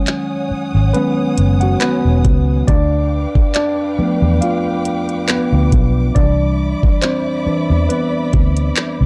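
Contemporary R&B at a slow 69 BPM with a light 16th-note swing, this smooth, tender fragment features a mellow, slightly out-of-tune tine electric piano up front, taking the lead across the full 9.1 seconds over a rootless Emaj13, then G7/D and Cmaj9 chords. It is backed by a lush bowed string section with vibrato, a soft attack and sidechain pumping, a round, foam-muted vintage fingered bass entering at 0.5 seconds, and a produced drum kit of knocking kick, metallic hi-hats and handclaps, all set in a dark digital ambience.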